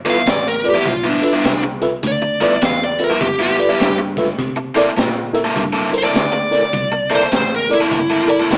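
A smooth, overdriven lead guitar carries the melody up front in this swaggering, gritty electric blues shuffle at 102 BPM, over a dark picked rhythm-guitar riff, a reedy electric piano with fast tremolo pushed through a combo amp, a round fingered bass and a crunchy breakbeat kit with a high-tuned snare and tight kick, all moving from G13 to C13 at 4.4 seconds with the feel of a band playing live in one room through a small speaker, touched by light reverb.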